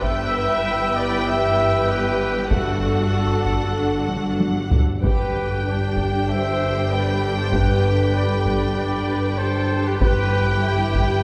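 Heavy-sticked taiko drums drive this heroic, adventurous slice of epic orchestral film score at 96 BPM in G major, breaking into a fill at 4.1 seconds as punchy, distant trumpet stabs ring out, while a clear, intense violin melody sings over an expressive second violin line and smooth violas, soft-attack French horns hold sustained chords in the background, and lush cellos and rich double basses anchor the bass, the whole ensemble set in a long, echoing church reverb.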